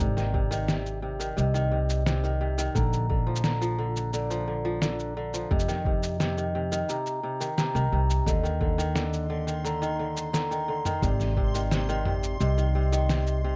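Playful and hopeful, this short folktronica excerpt moves at 87 BPM in a straight 4/4, tuned slightly sharp to A4 = 441 Hz and drifting through Ab, Bb, F5, Eb5 and back to Ab. Up front, a crisp, fingerpicked kora rings out low arpeggios with tape echo, while a woody pizzicato upright bass on steel strings carries the bass line. A lo-fi sampler-style kit, compressed, pitched down and tape-warm, supplies cabasa, toms and a fat snare that sits forward, joined from 0.3 s by a muffled, thumpy electronic kick. Above them, a metallic vibraphone played with medium mallets and its motor off adds a ringing second line through tape echo. From 9.3 s a reversed, detuned, granular texture swells in the background with a soft attack and bright tone, all within a dark production under light reverb.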